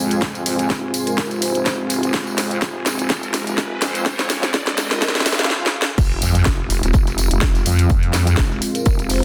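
A dense, heavily limited mix with light reverb carries this gritty, swaggering bass house cut in F minor at 125 BPM, where a nasal, resonant vowel-sweep wobble bass with tube saturation sits up front beside a punchy electronic kick and a house kit with a cracking snare, crash and hi-hat, while the bass and a moody, detuned analog pad roughened by 12-bit sampler grit both pump with sidechain. Through the build-up a blurred granular cloud pad drifts in the background until 5.5 seconds, while a jingly tambourine, faint electronic risers and swells, and brief mellow vibraphone notes with fast motor vibrato add color. At the drop at 6.0 seconds an impact lands and a distant, roomy jazz brush kit joins very quietly beneath the driving groove.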